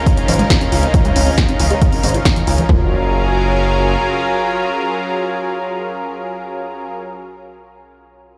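Uplifting trance in F# major at 137 BPM, this euphoric fragment of a longer piece opens with a lush, detuned unison pad holding chords throughout its 6.9 seconds. A tight, mellow sequenced arpeggio sits in the background with tape echo under a filter sweep, while a punchy, tape-warm analog drum machine drives kick and toms until 2.8 seconds and hi-hat and snare until 2.7 seconds, and a gritty, nasal driven bass runs until 4.0 seconds. The pad, arpeggio and bass all pump under sidechain as the harmony shifts to F#maj7 at 2.7 seconds in a big, reverberant bare room with a faint mains hum.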